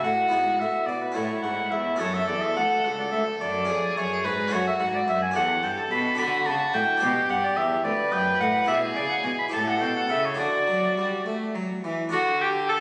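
Flowing and dance-like, this baroque-style classical sonata movement with continuo moves in a straight 6/8 at 72 BPM, settling into D major from 5.4 s, as a clear oboe with light vibrato carries the melody up front over a gut-strung violin's reedy second line, an airy, plucked harpsichord's round accompaniment and a rich, close cello bass, all heard through a moderate concert hall reverb captured on a phone in the room, in a short cut from a longer piece.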